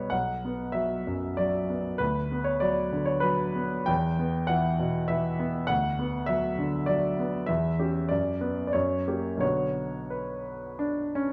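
A clear, present baby grand piano sits up front in this romantic character piece for solo piano, its bittersweet, stormy mood unfolding in a flexible, rubato 3/4 across a span from B1 to G5. The harmony moves from the home minor chord through Em and a diminished chord before gathering on F# at 8.7 seconds and settling back home at 9.4 seconds. A moderate recital-hall reverb surrounds the instrument in a dark production, and the 11.3-second passage is cut from a longer piece.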